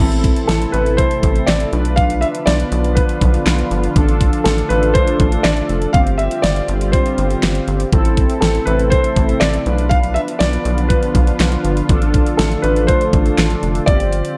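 Nocturnal and driving, this synth-pop excerpt moves in a straight 4/4 over a dark production with light reverb and digital ambience. A dark grand piano carries the melody from 0.5 seconds, its mellow, smooth, vintage tone given short sustain and an analog delay. Beneath it, analog synth brass supplies bold, fat, warbling sawtooth accompaniment with a filter sweep, vibrato and chorus, while a lush unison pad of thick, detuned sawtooth chords with slow attack and long release sits in the background, also treated with chorus. A rubbery square bass sits up front with a hollow, bouncy, nasal filter pluck and stops at 14.2 seconds. The electronic, layered pop drum kit also sits up front, with a knocking kick, fat snare, metallic hi-hats and handclaps, over a chord cycle that moves from Am through Bdim, Dm/A and G7sus4.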